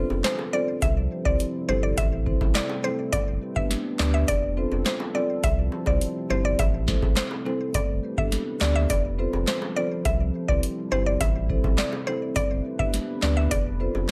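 Opening together, a woody, bright mallet-like synth pluck carries the melody with chorus and delay over a marimba with medium mallets pumping against the sidechain, a dark, detuned ambient pad in the background and a deep sine sub bass with octave, while soft-handed, high-tuned bongos and a booming analog drum machine with deep kick, crisp snare, handclaps and metallic hats join within the first 0.2 seconds, giving this bouncy, hypnotic dancehall excerpt, which cycles through F, C, Am and G, a light digital reverb.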